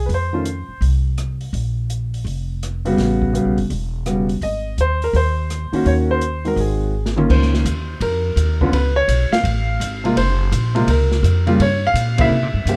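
A clear, present grand piano with long sustain and a woody, thumpy pizzicato upright bass on gut strings open this swinging, warm jazz piano trio excerpt at 167 BPM in Ab major, joined at 0.1 seconds by a dark, smooth drum kit with a boomy kick and rolled-off top that plays a fill into the move to Db major at 7.3 seconds, with light reverb and a band accent at 12.1 seconds.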